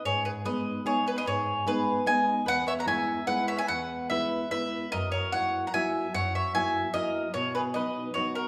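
Italian folk serenade in 3/4 at 148 BPM, lively and sunny yet played with a rubato feel, heard as a short excerpt cut from a longer piece. A woody, double-strung mandolin carries the picked melody up front while a second, equally mellow mandolin adds a softer line beneath it, and a full-bodied nylon-string guitar, fingerpicked and also up front, supplies deep classical accompaniment from 0.1 seconds. The parts sit in a wet recital hall reverb with a long 1.7-second decay, moving through G#m, E, F#7 and B.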